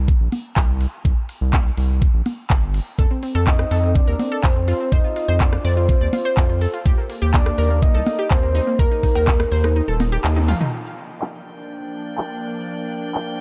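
Dark, warm digital ambience frames this euphoric, hopeful progressive house excerpt at 124 BPM in Bb major. A deep, tube-saturated analog bass and a knocking, up-front kick sit beneath a pop drum kit of crisp hats, handclaps and toms, with overdriven electronic congas, rim click and cowbell. A detuned, warbling analog pluck arpeggio with dub echo joins from 3.0 seconds, followed by a soft octave-layered synth lead with vibrato and delay, both pumping to the sidechain. The kick drops out at 9.8 seconds, a band accent hits at 10.2 seconds, and a drum fill leads into a new section at 10.7 seconds, after which a morphing wavetable pad with 12-bit sampler grit and a glassy, drifting harmonics texture open up in reverb.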